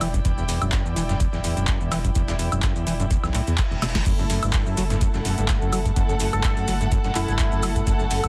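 Acid house with a trippy, gritty swing, where a squelchy, distorted acid bass riff pumps over a thick sine sub bass, a deep electronic kick, a booming analog drum machine with crisp snare and metallic hats, a very quiet dusty sampler kit, grainy maracas and dark bowed strings, until a reverse cymbal and drum fill lead into a drop at 4.1 seconds that brings in a lush detuned pad, with an airy, dreamy chorused lead appearing at 6.3 seconds, all through a heavily compressed radio-like sound with faint mains hum.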